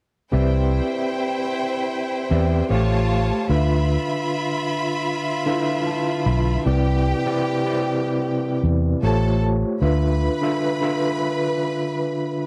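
Bittersweet and smooth, this short soul excerpt with a light sixteenth-note swing sets an overdriven tine electric piano, barky and gritty with fast tremolo through a combo amp, over a dark, round, foam-muted electric bass that drops out at 10.3 seconds, while a lush, bright violin section adds an intense, vibrato-rich second line, all captured in a dry, close 1970s-style studio sound, with the piano taking a fill from 5.1 seconds as the chords cycle from Cmaj7 through A7alt to Dm69.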